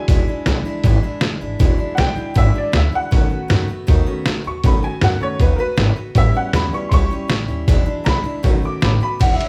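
A band playing live in one room fills a large studio with moderate reverb in this short, rowdy and upbeat rockabilly cut from a longer piece, moving at a straight 158 BPM in 4/4 and E mixolydian. The worn, slightly detuned upright piano takes the spotlight with a solo from the start until 9.2 seconds, its open tone riding over a changing progression of E7, B7 and A7 before settling back through E7 to B7. Underneath, a compressed, pitched-down sampler-style drum kit sits up front with a thumpy kick, fat snare, hi-hat and ride cymbal, while a pizzicato upright bass with gut strings adds a dark, woody low end. A bright, full-bodied dreadnought acoustic guitar is picked quietly in the background as extra accompaniment. At 9.2 seconds a twangy, slightly broken-up electric guitar through a small old amp jumps up front with a brief high melody just as the excerpt ends.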